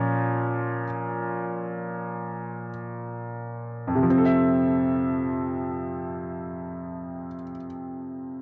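This is a dry, close recording with a 1970s studio character, set in a small booth whose short, moderate ambience keeps the sound intimate. It is a brief pop fragment cut from a longer piece, in free time and F major, tuned slightly high to A4 = 443 Hz. A bright baby grand piano plays alone as the sole accompaniment part, ranging from F2 to E5 and sitting up front, with audible action noise and long sustain. The first 4.1 seconds slow down over a B-flat minor chord, in keeping with the tender, hopeful mood. At 4.1 seconds the harmony settles onto F major seventh, and the piano carries on until the fragment ends at 8.4 seconds.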